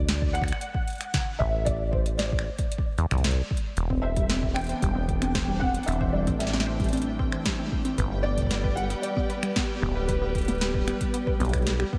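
A soft, felt-muted upright piano with audible action noise carries the melody over a rubbery, resonant acid bass as this glitchy, wistful IDM passage opens, backed by a booming, overdriven analog drum machine with crisp snare, metallic hats, toms and finger snaps alongside a deep electronic kick, before a detuned, dusty pluck enters with arpeggios at 3.9 s, a faint, bright pulsing gated texture follows at 4.2 s, and a nostalgic, warbling tape-like pad arrives at 4.5 s, all within a dreamy, reverb-soaked mix.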